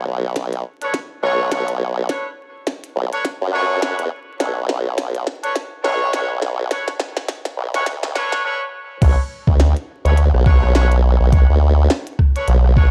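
A swung sixteenth-note groove at 104 BPM in 4/4 drives this playful, gritty glitch hop cut, set in B minor over a single Bm9 chord. The formant-sweep wobble bass opens the piece up front, blending sawtooth and sine tones with chorus, tube saturation and a high-pass filter into a sustained, fast-attack growl. At 0.4 seconds a pitched-down, thumpy electronic kick arrives with tape-like grit and studio reverb, alongside an overdriven glitchy kit of tiny snare, clicky hats, rim clicks and crash. At 0.8 seconds a bright horn section adds punchy pop-style stabs with light vibrato, sounding distant and roomy through sidechain pumping and tape echo. A long build-up carries a drum fill and a filter sweep, pauses for a brief break, then lands on the drop at 9.0 seconds. The whole track sits in a dry, gritty hardware sound dusted with vinyl crackle.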